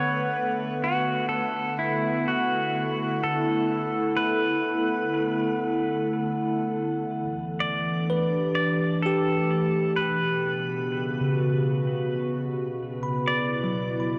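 A twangy, up-front pedal steel guitar carries the melody with slide and volume swells, drifting through shimmer reverb and delay in this serene, spacious ambient excerpt at a slow 63 BPM in 3/4. Beneath it, a warbling, detuned tape-like pad holds nostalgic, lo-fi sustained chords with chorus, while a glassy, ethereal glass harmonica hovers in the background until 7.1 seconds. A bell-like tine electric piano enters with clean arpeggios at 8.1 seconds and fades out, the whole piece bathed in a wet cathedral reverb as the harmony moves from D6 through A7sus4 and Bsus2 to Bmadd9.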